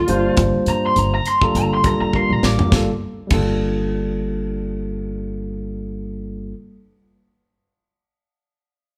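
Driving and intense, this electric jazz fusion excerpt in G minor at 102 BPM opens with an up-front, lo-fi lead guitar through a small cranked amp, soloing over a barky, lightly overdriven tine electric piano, a woody, thumpy pizzicato upright bass and a tight funk kit with a high-tuned snare, whose fill at 2.1 seconds closes the solo at 2.7 seconds before the drums drop out at 3.5 seconds, leaving piano and bass over Gm9 in a live room drenched in large studio reverb.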